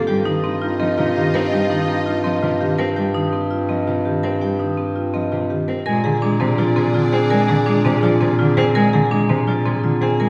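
Propulsive and hypnotic, this minimalist classical pattern music, cut from a longer piece, sets up-front marimba arpeggios struck with medium hard mallets over a clear, soft-attack bass clarinet line and a smooth, bowed cello played by one player with vibrato, while a ringing, fingerpicked concert harp carries the melody in the background, a mellow, distant clarinet adds a second line and a dark, woody string section holds sustained chords in stretches beginning at 0.1 s and 5.9 s, captured in a church or concert hall with wet recital hall reverb.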